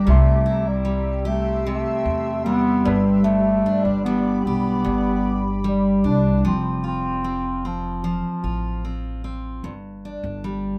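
Full-bodied picked steel-string acoustic guitar and woody pizzicato upright bass sit up front from the start of this sunny, easy-going acoustic pop excerpt at 75 BPM in 4/4, alongside a very quiet, clear upright piano and a blurred, evolving granular cloud pad with its own reverb, both gone by 6.5 seconds as the chords move from C and G to F, while a mellow, vintage-toned bass clarinet carries the melody from 0.1 seconds to 9.3 seconds in a lightly reverberant space.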